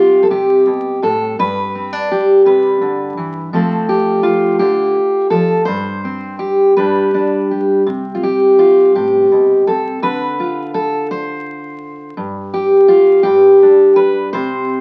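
Heard through the vinyl crackle of a very old 78 rpm record, with the highs rolled off above 10.3 kHz, this fragment of a longer piece has a faded, antique sound softened by light reverb. It is a peaceful, gentle folk performance for solo fingerpicked steel-string acoustic guitar, moving at an unhurried 56 beats per minute in a straight 6/8. The guitar sits up front with a full-bodied dreadnought tone, covering a range from G2 up to C5. The harmony begins on a C power chord, then moves through G, F and a Gsus4 that settles back to G, before returning to C and passing through D minor. Around 12.2 seconds the chords briefly fall away, and the passage comes to rest on a G power chord at 13.2 seconds before the fragment ends at 14.8 seconds.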